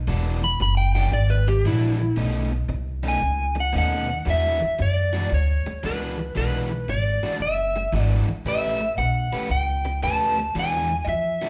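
A woody, thumpy upright bass opens this rollicking, swaggering electric blues shuffle at 114 BPM, joined at once by a compressed, overdriven electric guitar riff and, at 0.4 seconds, an up-front, slightly broken-up slide guitar that takes a solo through 4.3 seconds. Swinging in E mixolydian over E9, B9 and A9 chords, tuned a touch low to A4 = 437 Hz, the band plays live together in one room with a moderate large-studio reverb, in an excerpt cut from a longer piece.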